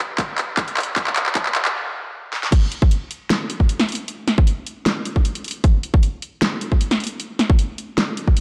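This bright, playful future bass fragment, cut from a longer piece, opens on a build-up with a drum fill from an up-front electronic kick drum and a layered pop drum kit of crash cymbal, handclaps, hi-hat and snare, then halts for a stop at 1.7 seconds. The drop lands at 2.5 seconds in a swung half-time feel, with the hard-clipped, tape-warm kick alongside a fat snare and high-pass-filtered hats and cymbals. Dark production and a lush hall reverb give the drums a spacious, roomy sheen.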